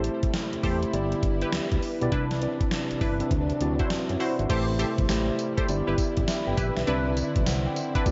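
An up-front, gated 80s drum machine drives this punchy, confident new jack swing R&B fragment, with a thumpy kick, a gated-reverb snare, hi-hat, tambourine and crash riding a swung sixteenth-note feel. A fat, saturated, detuned analog bass sits beneath a mellow, clean tine electric piano, while a funky polysynth adds chorused stabs with digital delay and a lush, woody string section holds dark chords in the background. The chords cycle through Am7, G6, Cmaj9 and D9 under a moderate plate reverb in a dark, warm mix.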